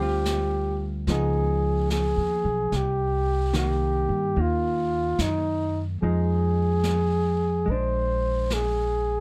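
A slow swing in 4/4 at 73 BPM sets the pace for this tender, intimate jazz ballad excerpt, cut from a longer piece. Up front, a breathy flugelhorn carries the melody between Eb4 and C5, its mellow tone shaded with light vibrato, scooped notes and a smooth top that still lands with some punch. Beneath it, a dark, clean hollow-body electric guitar plays fingered, compressed accompaniment, while a pizzicato upright bass sits close and thumpy with a woody character. A brush kit enters at 0.3 seconds, placing brushed snare and hi-hat at a distance in a roomy studio space. The harmony moves from Dm7 through Db9 and Cm7 to Fm7 and Bb9, and the overall sound stays dry, with little reverb.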